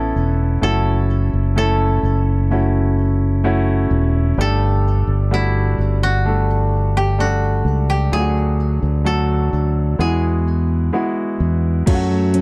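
Hopeful and tender, this slow pop ballad at 64 BPM in 4/4 sets a dry, woody koto melody against a bright, brilliant concert grand piano accompaniment and a punchy, up-front fingered electric bass, moving through Aadd9, F#m7, Gsus2, D and Eadd9 in a studio reverb with a dark, warm production. At 11.9 s, just as the harmony lands on F#m, a full-bodied fingerpicked steel-string acoustic guitar enters in the background with arpeggios through digital delay. Alongside it comes an overdriven, electronic R&B drum kit with a soft kick, metallic hi-hat and a crash cymbal.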